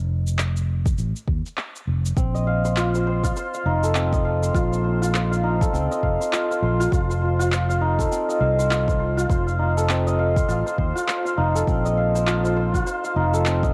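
Mystical and earthy, this organic downtempo fragment, cut from a longer piece, moves with a lightly swung sixteenth-note feel. A shimmering, ringing santur plays arpeggios up front from the very start, colored by cassette tape and tape echo. Beside it, a round fretless electric bass sits low and prominent, thickened by tube saturation and pumping against a sidechain. Electronic cabasa and handclaps slip in at 0.3 seconds, tucked back in the mix with a tape-warm, layered character, and a deep, produced electronic kick drum joins at 0.9 seconds. The harmony opens on an unharmonized moment before settling between Bb5 and F, all within a light reverb and the homespun grain of a cassette home recording.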